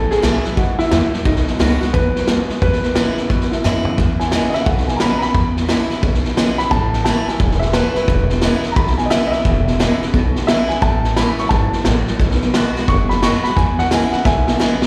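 Swung eighths drive this upbeat, rollicking rockabilly clip from a longer piece, caught live through a venue's PA in a reverberant recital hall, with a punchy, up-front vintage drum kit and a thumpy, gut-strung pizzicato upright bass underneath. A dark, mellow upright piano carries the melody with plate reverb and slapback echo, while a boxy, fresh-strung picked acoustic guitar adds swing accompaniment and a twangy, slightly broken-up electric guitar through a small old amp plays a riff in the background. After a drum fill at 3.6 seconds, the piano takes a solo from 4.0 seconds to the end over changes moving among E, A and B7, capped by another drum fill.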